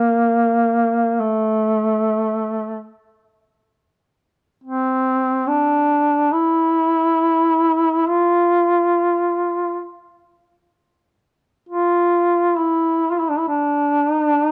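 Captured on cassette at home, the sound carries a hint of tape, a light reverb and the ambience of a small room. A solemn, mournful Caucasian lament in D minor, tuned to A4 = 438 Hz and played in free time, it features a lone mellow duduk sitting up front yet sounding distant and roomy, its folk-style line shaded with vibrato between A3 and F4. The duduk plays alone throughout the 14.5 seconds of this fragment, cut from a longer piece.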